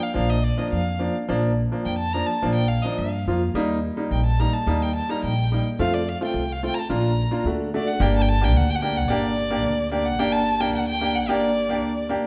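Klezmer in 2/4 at 108 BPM, soulful and festive, this short cut from a longer piece gradually speeds up as it moves from Bb major into G harmonic minor at 8.0 s. A clear, smooth violin carries the melody with vibrato, close and up front, while a bright upright piano with audible action noise plays accompaniment and a pizzicato upright bass with steel strings holds the low end. The sound is dark overall, set in a wet recital hall reverb.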